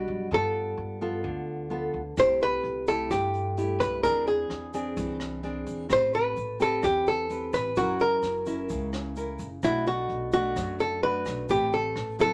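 An up-front, dark and clean hollow-body archtop guitar carries the picked melody in this romantic, breezy bossa nova excerpt at 129 BPM in straight 4/4, over a full-bodied fingerpicked nylon-string guitar with audible finger squeak and a woody, thumpy pizzicato upright bass, while a brushed jazz kit with punchy kick, hi-hat and rim click enters at 2.2 seconds alongside a grainy, bright tube shaker in the background, all in light reverb as the chords move from G9 through C6, Eaug7, Am9, F#7 and Bm7 back to Am9.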